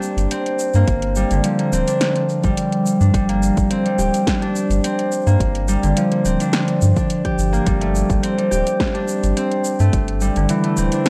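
Heard through worn, warbling cassette tape with light reverb, this hypnotic fragment of organic downtempo sets a bright, ringing concert harp up front playing fingerpicked arpeggios through tape echo, over a dark, round analog bass with sidechain pumping and an overdriven deep house kit of punchy snare, metallic hi-hats and shaker re-recorded in a large room, joined at 0.9 seconds by a deep electronic kick, while the harmony moves from Gm7 to Am7 at 7.7 seconds.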